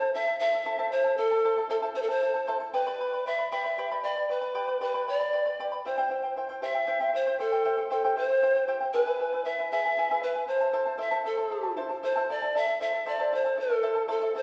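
A wet recital-hall reverb surrounds this short cut from a longer Andean folk piece, with both instruments placed up front. In A minor with the tuning set to A4 = 444 Hz, it moves at 77 BPM in a straight 6/8, felt in dotted quarters, and the mood is melancholic and earthy. A bamboo pan flute carries the melody between A4 and E5, its breathy tone marked by a crisp, chiffy attack, expressive vibrato and a bright edge. Beneath it, a fingerpicked acoustic charango accompanies from E4 to B5, its double strings giving a shimmering sound, with some courses doubled at the octave. The harmony moves from Am to G, C and E before returning to Am at 10.5 seconds, and the opening passage begins again at 12.0 seconds.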